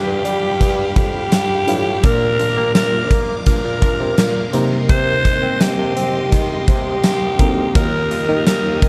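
A dark, warm production with light reverb and a small-room feel frames this nostalgic, uplifting 1980s-style pop fragment at 84 BPM in 4/4, moving through G7, Bb, Cm7 and Ebadd9. An up-front, raspy alto saxophone carries the melody with scooped notes and vibrato over a huge arena drum kit with a punchy kick, hi-hat, snare and tambourine. Beneath it sit a mellow, warbling FM electric piano with phaser, a very quiet, crunchy overdriven guitar, a swirling phased string machine holding bright chords, and a bassoon taking the bass line in a classical style with light vibrato, while from 2.4 s a funky, detuned sawtooth polysynth adds chorused stabs with tape echo in the background.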